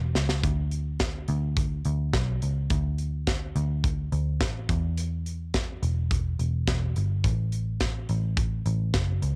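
This short clip has a dry, intimate home-recorded cassette sound with little reverb. It is uplifting, hopeful pop in a straight four-four feel, built from just bass and drums. The vintage muted picked electric bass starts at 0.0 seconds, dark, round and foam-muted, with a punchy amped tone that sits up front in its low register. The modern studio drum kit joins at 0.2 seconds, opening with a brief fill. Its acoustic kit of hi-hat, punchy kick and high-tuned snare sounds airy and polished despite a cassette tape colouring, and it stays up front alongside the bass until the clip ends at 9.4 seconds.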